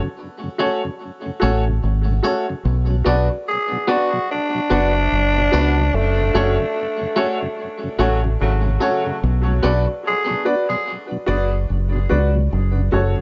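A mellow tonewheel organ opens this slow, spacious reggae excerpt in B dorian at 73 BPM, its slow rotary speaker and tape echo giving a round, dark tone with vibrato and a touch of key click. Moments later a clean, twangy electric guitar with phaser joins alongside a woody upright piano playing stabs, both carrying tape echo. At 1.4 s a deep dub fingered electric bass arrives, punchy and up front, lending the swung sixteenth-note groove its heavy weight. A raspy, gritty tenor saxophone carries the melody from 3.5 s, sounding distant and roomy through its echo, and from 8.0 s a brief horn section adds a second line with octave doubling and a smooth top during a band accent. The chords move between F#m and Bm, and a moderate spring reverb and a softened top end frame the mix.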